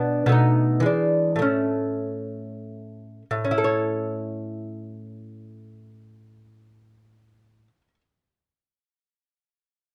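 In a 3/4 with a free, rubato feel, the tempo drifts between 93 and 120 BPM, easing and slowing down through the first 3.3 seconds. This serene, radiant classical excerpt is a baroque-style dance in A major, cut from a longer piece and tuned slightly low, with A4 at 439 Hz. A solo lute carries everything from 0.0 to 8.0 seconds, its bright, delicate fingerpicked gut strings doubled in courses, some in octaves, spanning A2 to C#5 and sitting up front. Early on the harmony moves through B7 and E7 before settling on A, and after the opening phrase a second contrasting passage begins at 3.3 seconds. Light reverb surrounds the instrument within a dark, warm production.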